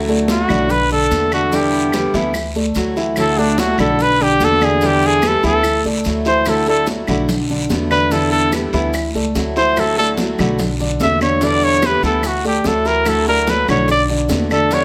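A smooth-topped trumpet with light vibrato carries the melody up front, its solo touched by plate reverb, in this relaxed, danceable excerpt of Cuban son and guajira. Underneath, a full-bodied picked steel-string acoustic guitar with audible finger squeak and a dark, boxy grand piano playing arpeggios move through Bm7, Em7 and Dadd9, while a thumpy, woody upright bass with gut strings anchors the low end. Bright, high-tuned congas, close and dry claves and grainy maracas sit in the background, a raspy guiro sounds close and dry, round, low-tuned bongos slip in very quietly at 6.5 seconds, and the recording carries a moderate large-studio room sound.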